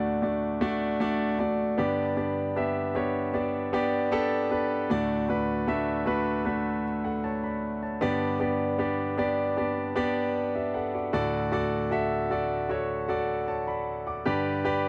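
A solo concert grand piano carries this tender, emotional pop fragment, its intimate, up-front tone marked by deep bass, long sustain and audible action noise across a range from D2 to D6. At a relaxed 77 BPM in D major, the harmony moves gently between D and G chords, with a new section arriving at 11.1 seconds. The close, dry 1970s-style studio sound carries only a touch of reverb, lending the polished playing a personal, in-the-room feel.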